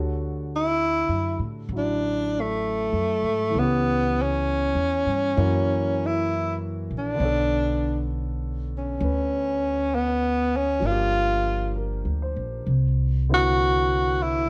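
This jazz ballad excerpt unfolds at a slow 66 BPM in 4/4 with a gentle swing on the eighth notes, setting an intimate, romantic mood in D major. A breathy tenor saxophone carries the melody from 0.6 seconds, played up front in a smooth jazz style with subtone, scooped notes and a light vibrato, its soft-edged sound bathed in plate reverb. Beneath it, a polished, present grand piano supplies the accompaniment in its middle register, while a woody, thumpy upright bass with gut strings plucks a low pizzicato line close to the listener. The harmony moves from Dmaj7 through a minor seven flat five and dominant chords into Bm9, then toward Gm7 and C9. A light reverb gives the small group a warm, close-knit room sound.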